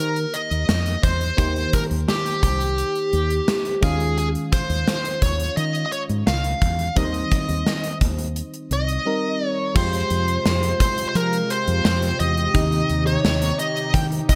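A bright, overdriven lead guitar sits up front and carries the melody between G4 and G5, its picked notes trailed by delay. This romantic, nostalgic 1980s-style pop passage, cut from a longer piece, moves at 86 BPM in a straight 4/4, with an FM electric piano adding glassy, bell-like chords that decay and warble under chorus. A woody fretless bass, dark and round with a hollow-body tone, holds the low end, while a gated drum kit enters at 0.2 s with a punchy kick, a medium-tuned snare, bright cymbals and an airy, polished stone-room sound. The harmony moves from Eb6 through Db/Eb and Cm/Eb to Fmadd9, then returns to Cm/Eb. At 9.8 s a brassy, bold analog pad of detuned sawtooth tones joins with a soft attack, a filter swell, vibrato and chorus, lending the close a sustained, evolving glow in a small room with light reverb.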